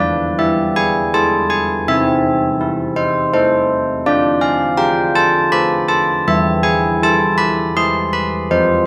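This is a classical tune for church bells in triple metre, wintry and solemn in mood, heard as a short excerpt cut from a longer piece. A carillon plays alone across its full length, ranging from E3 up to C6. The bells have a bronze ring with a noticeable minor-third overtone and the sound of a worn iron clapper, bright and full at the front of the mix. The harmony moves from E to Am/C at 1.9 seconds, then to Dm and back to E at 6.3 seconds. Close, detailed microphones capture the bells against a moderate concert hall reverb.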